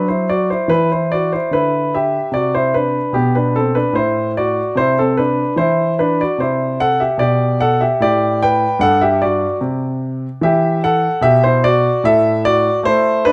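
Close, detailed miking with light reverb brings an up-front, intimate concert grand piano to the fore, its deep bass, long sustain and audible action noise carrying a radiant, dance-like baroque-style suite movement at 74 BPM in a rubato 4/4, spanning G2 to G5 through chords moving from Bm to Em, Am, G and back to Em before settling on A5 at 12.0 seconds in this 13.3-second cut from a longer piece.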